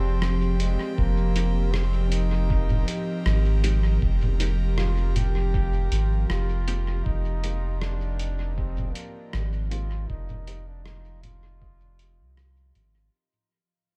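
A distant, clear trombone with light vibrato sings a solo melody through dub echo over an airy, breathy pad with chorus and a round sub bass sitting up front, opening this deep, spacious ambient dub fragment on a lingering Fm11 chord. Muffled, tape-toned congas, hi-hat and rim click carry their own dub echo, a thumpy electronic kick joins in the background at 1.0 seconds, and a very quiet, resonant, filtered chord stab with phaser slips in at 1.4 seconds. A light reverb holds the swung groove together as the whole fades out from 5.0 seconds.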